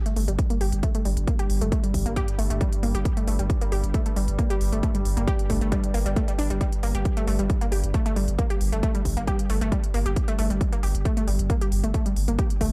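An up-front, heavy electronic kick enters at 0.4 s to drive this hypnotic peak-time techno at 135 BPM, set over a thick, overdriven sine sub bass on G1, a punchy, warbling detuned unison pluck riff with dub echo and sidechain pumping, smooth layered hi-hats in a small room, and a deep, moody chorused sawtooth pad drone with a slow attack and long release, all within a dark, dry production.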